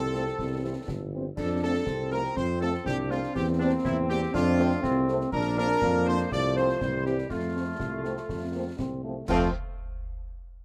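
A rousing, proud military-style march for wind band opens at once, with a clear trumpet section carrying the melody in a tight, classical style with light vibrato. Alongside it, a warm euphonium and a woodwind section play second lines, clear trombones hold sustained chords in the background, and a mellow, soft-attacked tuba sits up front on the bass. From 0.1 seconds a dark, distant French horn section adds roomy accompaniment, while concert snare drum, concert bass drum and clash cymbals, close and dry with shadowy cymbals, mark the straight 2/4 pulse at 121 BPM. In F major, the harmony moves from C to F, through C7/E and Bb, then F/C and C before settling on F at 7.3 seconds. A light reverb surrounds the band in this brief cut from a longer piece.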